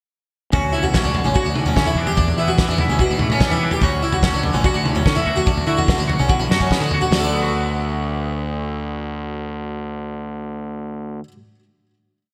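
A plucked, up-front harpsichord spins a bright ostinato of arpeggios, bathed in lush chorus and digital delay, in this playful math rock and midwest emo piece. Alongside it, a clean, scooped twangy electric guitar with analog chorus plays syncopated fingerstyle accompaniment, and a growly, overdriven fuzz bass drives a punchy syncopated riff. A loose indie kit with a fat snare, tight kick and grooving toms sits under gated reverb, plays a fill at 6.3 seconds and drops out at 7.2 seconds, leaving the other parts to ring out on a final chord in a lush hall and small-room ambience with 1980s-style digital production.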